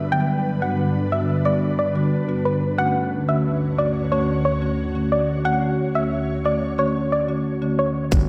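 A bouncy dancehall groove in 4/4 at 90 BPM with a straight feel sets a summery mood in D major, moving from Gmaj7 to Dmaj7 at 2.8 seconds. An ethereal, airy pad holds sustained chords from the start, its ensemble chorus, built-in reverb and sidechain pumping giving it a breathing haze. A soft, round pluck carries the melody with chorus and a diffuse ambient delay, while a woody marimba played with medium mallets on rosewood bars adds up-front accompaniment that also pumps with the sidechain. Only at 8.1 seconds do a fat, detuned analog bass and a tight, overdriven electronic shaker and kick drum arrive, just before this cut from a longer piece ends. The whole dreamy mix is soaked in a lush digital hall reverb.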